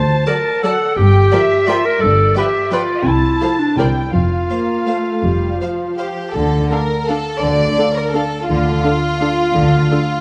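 Sweeping and elegant, this rubato orchestral ballroom waltz excerpt sets a dusky, vibrato-tinged violin section on the melody over a pure, up-front second violin line, murmuring violas and hushed sul tasto cellos and double basses, while a clear solo clarinet weaves a second line until 6.0 s, all bathed in a moderate scoring-stage reverb as the harmony turns to D minor at 6.4 s.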